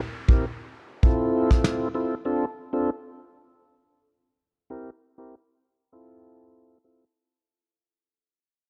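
A dry, gritty tape recording with light reverb frames this short dancehall piece cut from a longer track, bouncy and sultry at 98 BPM in 4/4 with a lightly swung sixteenth-note feel. An electronic downlifter opens the sound and fades by 2.3 seconds, while a soft brush drum kit sits up front from 0.3 to 1.8 seconds, its punchy kick, medium-tuned snare and rim click sounding acoustic, airy and polished in a small room. The tonewheel organ carries the accompaniment from 0.3 to 7.0 seconds in a range from C4 to Bb4, clear and clean through a slow rotary speaker, with sidechain pumping and a low-pass filter that sweeps across its whole span. Its chords move from C7 to Fmaj7 and Dm7, then return to C7 and Fmaj7. The whole passage fades out over its length, and the tuning sits slightly below standard pitch at A4 = 436 Hz.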